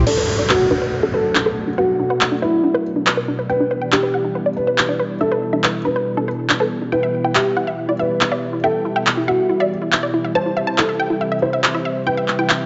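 An excerpt of driving, emotional uplifting trance at 140 BPM in 4/4 opens on a bright, thick unison pad of detuned sawtooth and square waves, its slow attack and long release coloured by chorus as it holds sustained chords from B2 to F#4. At 0.1 s the rest arrives together: a punchy, tape-warm analog drum machine sits up front with crash cymbal and handclaps, while a downlifter sweeps through until 3.5 s. A mellow, full-bodied unison pluck of wave-folded sawtooth and triangle carries the melody between A4 and A5 through digital delay, and a second, brighter pluck built from detuned sawtooth and sine spins arpeggios from D4 to E5 with a short decay and its own delay. Both plucks ride a filter sweep throughout, and alongside them a soft, boxy felt-muted upright piano adds an intimate, dark second line from E4 to C5 with delay. The harmony moves from Bm7 to G6, Em and C, and the whole mix sits in a lush, wet hall reverb with a 1.9 s decay, its highs rolled off above 7.8 kHz.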